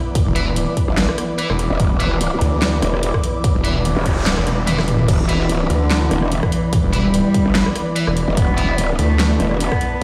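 A snarling, saturated saw bass and a growling, formant-filtered wobble bass dominate this aggressive, chaotic heavy dubstep excerpt at 146 BPM in half-time, driven by a punchy kick and a kit with a huge snare and metallic hats, while distorted high-gain guitar stabs, a veiled muted string section and an ethereal pad pumping in the background, a noise sweep from 3.8 seconds and a drum fill at 4.5 seconds, and an intimate sul tasto cello melody entering at 5.1 seconds fill out a stone-room sound.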